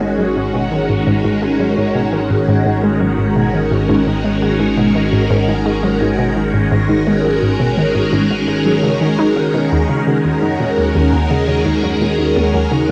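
Ambient, sequencer-driven space music at 85 BPM in 4/4, this short cut from a longer piece feels mysterious and cosmic, resting on G#m7 before shifting to D#m7 at 9.7 seconds. Up front, a phased string machine holds bright, swirling vintage chords with a slow attack and long release, colored by ensemble chorus, phaser and plate reverb. Beneath it, an analog pluck plays a riff with a fast attack and short decay, its detuned sawtooth and square tones warm, round and bright, treated with chorus and tape echo. A very quiet thumb-piano-like synth pluck traces gentle, tine-like FM arpeggios, while an analog drone sits in the background as a mellow, nasal bass, evolving through pulse-width modulation. The whole piece carries a wet studio reverb and the character of a home cassette recording.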